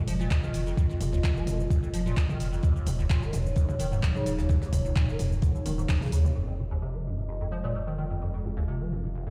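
Heard through a big sound system in a bare room with light reverb, this gritty, trippy acid house excerpt runs on a thumpy, tape-warm sampler kick up front, a punchy analog drum machine with handclaps, hi-hat, shaker and toms, and a very quiet, dry 70s kit adding hi-hat and a fat snare. A squelchy, resonant square-wave acid riff with filter sweeps, overdrive, phaser, chorus and digital delay sits bright in front, over a thick triangle sub bass with tube saturation and a moody, detuned pad of sustained Fm7 and Ebm7 chords, all three pumping against the kick. A drum fill arrives at 5.7 seconds, and once the drums stop, only the pad and the two basses carry the final section from 6.4 seconds.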